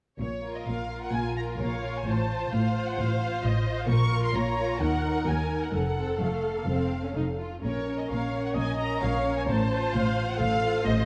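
A quick classical-period movement for string orchestra in Bb minor, this excerpt cut from a longer piece moves at 130 BPM in a straight 4/4 with a restless, urgent mood. The first violins carry the melody high above, sounding distant and lush with vibrato and portamento, while a second violin line sits beneath with a rich, expressive tone. The double basses and cellos enter together at 0.2 seconds to anchor the bass, the basses dark with a soft attack and smooth top, the cellos focused and close. The violas join at 1.1 seconds with a distant, bowed accompaniment that fills out the middle. The harmony circles between Bbm, F/A, Ebm and F, and the whole ensemble sits in a wet scoring-stage reverb that gives the production a dark, warm sound.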